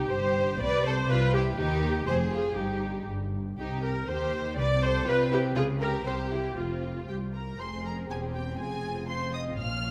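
A quick, stormy and restless classical-period movement for string orchestra in 2/4 at 121 BPM, cut from a longer piece, moves from C minor toward F minor at 5.6 s, as muted violins carry a dark, veiled melody over a second violin line in the background, the rich viola section sits up front with its accompaniment, and con sordino cellos, soft in attack, join the double basses to ground the bass, all bathed in moderate concert hall reverb.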